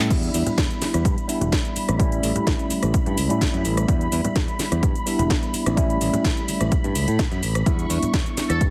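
Filtered disco house at 127 BPM with a sunny, feel-good mood, this brief cut from a longer piece sets a tine electric piano, a swirling vintage string machine with ensemble chorus and phaser, and a growly fingered bass pumping under a low-pass filter sweep against a punchy analog kick, a house kit with cracking overdriven snare and metallic hats, and dry background tambourine and congas, all over an Em7 to A7 vamp, until a buzzy muted trumpet section flickers in at 8.5 seconds, the whole thing squeezed into a heavily compressed radio sound.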